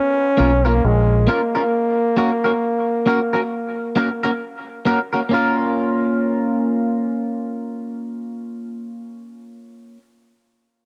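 A home cassette recording in a small room with light reverb carries this heavy, hypnotic reggae fragment, which swings gently and is cut from a longer piece. A clear, pop-style solo trombone, treated with tape character and dub echo, carries the melody until 4.4 seconds, while a bright, twangy, compressed clean electric guitar with lush chorus and echo picks out the accompaniment to the end. A dark, round fingered dub bass with transformer saturation sits up front only briefly near the start, over a Bbm and Gb chord movement.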